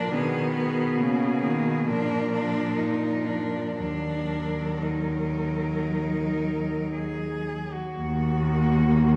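Classical lyrical piece for cello ensemble in Eb minor, solemn and melancholic at a slow, rubato 50-70 BPM, in which four bowed cellos with vibrato (a rich melody with a smooth top, a close, up-front second line that stops at 7.5 s, a clear, focused accompaniment and an even, distant-sounding bass) move through Bmaj7, Bb5 and Ebm within the long, wet reverb of a scoring stage heard from further back, in a short excerpt cut from a longer work.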